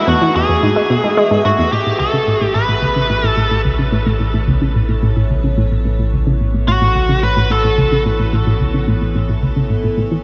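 A biting, overdriven electric lead guitar sits up front with a picked melody through delay until 8.0 seconds in this hypnotic, expansive slice of ambient, sequencer-driven space music at 109 BPM in 4/4, while a round, nasal analog pluck riff with chorus and delay carries a filter sweep, a bright, evolving wavetable pad morphs through phaser-tinged sustained chords, and a deep sine sub bass arrives at 1.7 seconds as the harmony moves from E to Aadd9, all bathed in huge ambient reverb and the warbling pitch drift of worn cassette tape.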